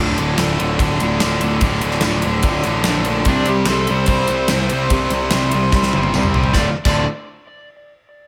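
Classic rock in D minor at 146 BPM, brooding and gritty, this short excerpt sets two riffing electric guitars, one cranked and overdriven through spring reverb and the other tight and distorted, behind an up-front gated 80s drum kit with a medium-tuned snare and tight kick, over a growly, fuzz-laden picked bass. A picked steel-string acoustic guitar with audible finger squeak sits in the background alongside a very quiet, jingly vintage tambourine. A dark, overdriven slide guitar enters at 3.3 s with analog delay as the chords move from Dm to C, and a drum fill at 5.7 s leads back to Dm in a small room with light reverb.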